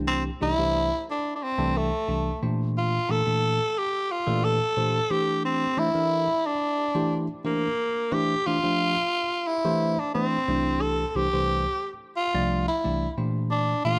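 Set in a straight 4/4 at 89 BPM, this short jazz excerpt feels funky and intense, cut from a longer piece. A bell-like tine electric piano carries the accompaniment from the very start, its clean, direct tone treated with a phaser and spanning a broad range from C2 to D5. A growling tenor saxophone takes the melody almost at once, at 0.1 seconds, playing up front in a raspy, gritty solo voice with vibrato, sitting between A3 and A4 and slightly louder than the keys. The harmony moves through C69, Bbmaj7, C13, Dm9 and a rootless F69/C before returning to Bbmaj7 at 13.2 seconds. Light reverb and a small room ambience frame a dark, warm production, giving the two bright, present parts a close, intimate setting.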